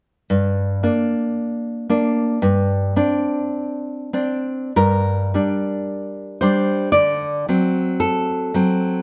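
A fingerpicked nylon-string guitar enters at 0.3 s, up front and deep in its classical tone, playing a wistful, passionate romantic solo in G minor at a slow 45-59 BPM in 2/4 with a free, rubato feel. It ranges from G2 to D5, moving from G minor to a suspended chord before a second passage that turns from G minor toward D7 at 6.9 s, with finger squeaks audible on the strings. A moderate recital hall reverb surrounds the instrument in this short section cut from a longer piece.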